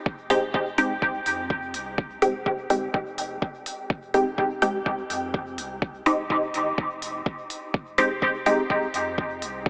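A deep, up-front kick and a dark, clean sine sub bass pumping in the background open this hazy, hypnotic dub techno fragment at 125 BPM in F minor, joined at 0.3 seconds by smooth hi-hats with a 16th-note swing and by a bright, detuned, wave-folded chord stab on Fm9 that sits up front, drenched in phaser, cassette-tape colour, sidechain pumping and dub echo until 8.6 seconds, all inside a huge ambient reverb and a heavily compressed, AM-radio-like sound.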